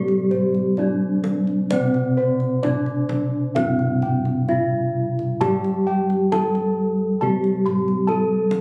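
Bronze metallophones and bossed gongs sound together from the opening moment of this shimmering, ceremonial Javanese gamelan passage, cut from a longer piece, moving at a steady 65-71 BPM in four. The up-front melody metallophone, struck with a horn mallet, rings dark with the shimmering beats of paired tuning, while the lower accompaniment metallophone, played with padded disc mallets, sounds mellow, soft and airy; higher bossed gongs spin round, beating arpeggios, and a close-miked, full set of gongs carries the bass. A deep, hard-handed kendang enters at 0.1 seconds, dry and close, and the whole is heard through a moderate recital-hall reverb with added club reverb and compression, captured on a phone in the room.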